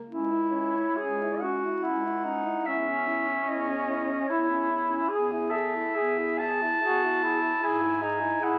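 A tender, lyrical classical fragment for single-reed quartet in C# minor opens at 0.1 seconds with mellow alto saxophone, tenor saxophone and bass clarinet, the tenor's vibrato accompaniment up front and roomy, the alto's light vibrato and soft attack shaping a smooth second line, and the bass clarinet low beneath, before the distant, up-front clarinet carries the melody from 0.5 seconds in a rubato 3/4 at 72 BPM, drifting through C#m toward E within the wet large-studio reverb and crackling haze of a very old 78 rpm record.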